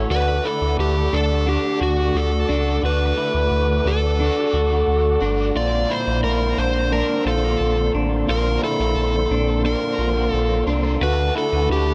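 Ethereal and blissful, this dream pop passage floats on a deep sine sub bass with octave, while a dark, overdriven slide guitar carries the melody up front from 0.1 s, a bright hollow-body guitar picks its accompaniment through harmonic tremolo, lush chorus and analog delay, a twangy, compressed clean electric guitar traces arpeggios with subtle chorus and delay, and a soft, flute-like tonewheel organ holds sustained chords in the background through a fast rotary speaker with audible key click, the echo-heavy mix set in a moderate plate reverb as the harmony moves from D to Bbadd9 at 5.6 s and back to D at 11.0 s.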